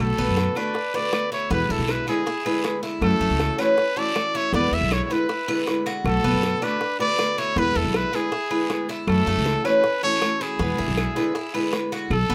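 A smooth-topped solo trumpet with vibrato carries the melody up front in this sunny, relaxed piece of Cuban son and guajira at 158 BPM in 4/4, moving over a Bm7, E7, F#m7, E7 progression. A thumpy, dark upright bass with gut strings sits up front beneath a fingerpicked steel-string acoustic guitar, and a bright, metallic, double-strung tres picks arpeggios from 0.2 s. Tight, high-tuned bongos and cowbell played with soft hands enter in the background at 0.4 s alongside a raspy guiro, and woody claves join at 0.6 s, all heard through close, detailed microphones with light reverb.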